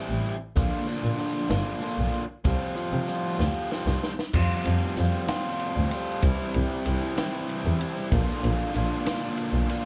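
Carefree and upbeat, this indie rock excerpt sways along at 64 BPM in a straight 6/8, driven by a biting, double-tracked overdriven electric guitar riff set up front over a rich, smooth bowed double bass with vibrato. A compact cocktail drum kit adds dry, natural punch with a high-tuned snare, a punchy kick and dark cymbals, and a drum fill from 3.4 to 4.3 seconds leads into the second section. The dark production is lightly touched with reverb as the chords move through C, Bb and Fsus2.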